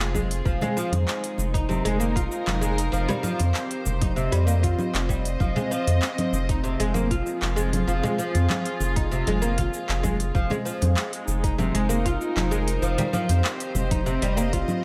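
A bright, woody oud plays up-front arpeggios with a gritty vintage-sampler edge and digital delay, over dark, distant bowed strings holding reedy, gut-toned chords that pump against the beat. This mystical organic downtempo piece moves at 97 BPM in F minor, shifting between Fm7 and Cm7/F. A deep, round analog bass sits up front beneath an overdriven electronic kit with crisp hats, cabasa and handclaps, plus a soft overdriven kick, while background congas with soft hands enter at 0.6 seconds, all in light reverb and studio ambience.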